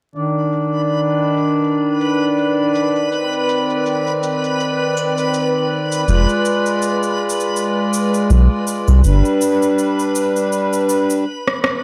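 Folktronica at 81 BPM in C harmonic minor, this intimate, wistful cut from a longer piece sets sustained, reedy harmonium chords with vintage sampler grit and plate reverb over overdriven electronic cabasa and rim click under a filter sweep, while a reversed, granular swelling texture glimmers above, a round, deep analog bass sits up front from 6.1 to 9.2 seconds as the chords move from Cmadd9 to Fm and G, and a brief stop at 11.3 seconds and a drum fill at 11.5 seconds close it out beneath vinyl crackle.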